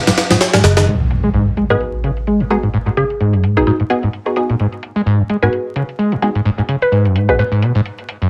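A squelchy, distorted acid bass riff opens this gritty, energetic breakbeat excerpt in G# minor at 129 BPM with a swung feel, alongside a pitched-up, compressed sampler drum kit with a high-tuned snare, bright layered electronic hats and thin-skinned congas in the background, while a picked electric bass note lands briefly at 0.6 s. An up-front electronic impact hits at 0.9 s as a filter sweep starts on the acid bass and the chord moves from G#7(no3) to G#m7. From 1.7 s a woody, mellow FM mallet pluck with a lo-fi radio and cassette character and a dark, muted dub chord stab with phaser both trail dub echoes, all over a moderate room reverb and vinyl crackle.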